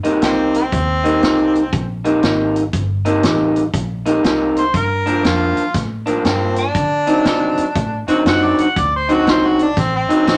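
Smoky and soulful, this short cut from a longer electric blues shuffle at 120 BPM in 4/4 has a twangy, slightly broken-up lo-fi guitar riff up front, a dark, round, foam-muted fingered bass, and a vintage drum kit with a punchy kick and rolled-off top. Over these, a warm, overdriven harmonica solos in jazz style with vibrato, tongue slaps and scooped notes across Cm7, Gm7 and D7b9. Very quiet, bright horn stabs enter at 8.1 seconds, all within a moderate studio reverb.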